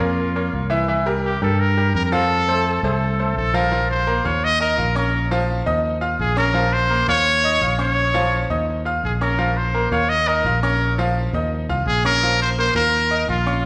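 A bright solo trumpet with vibrato carries the melody from the start over brilliant grand piano accompaniment and a round, punchy fingered electric bass, in a fiery, danceable salsa fragment at 169 BPM in Bb minor. The piano rings with long sustain and audible action noise, while the dark, amped bass sits up front. A recital-hall reverb gives the whole a church-like ambience as the harmony moves from Bbm, C7 and F into repeated Bb5 and Bbm, briefly touching Ebsus2 near 11.5 seconds.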